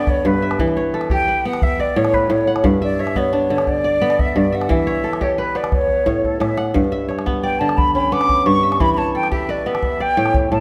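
Set in a reverberant recital hall, this joyful 10.6-second cut from a longer West African traditional piece moves in a straight 12/8 at 117 BPM in G lydian, cycling through G, Em and A. A crisp, ringing kora plays fingerpicked arpeggios up front, while an airy, mellow concert flute with vibrato and tape echo carries an expressive, tongued solo melody throughout. A deep calabash keeps the percussion and adds a drum fill from 5.9 to 6.7 seconds.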